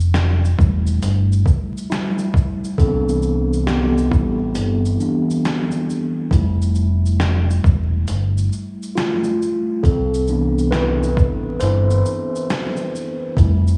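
A swung 68 BPM groove in 4/4 from a gritty, compressed sampler-style drum kit, with a thumpy kick, fat snare, hi-hat and shaker re-recorded in a large room, anchors a dark, round fingered dub bass up front in this mellow, dreamy lo-fi hip hop excerpt in C major, tuned to A4 = 435 Hz, while a clean tine electric piano heard through its built-in speakers enters at 0.6 seconds to solo over Fmaj9 and Cmaj7 chords, the mix carrying light reverb, vinyl crackle and small room ambience.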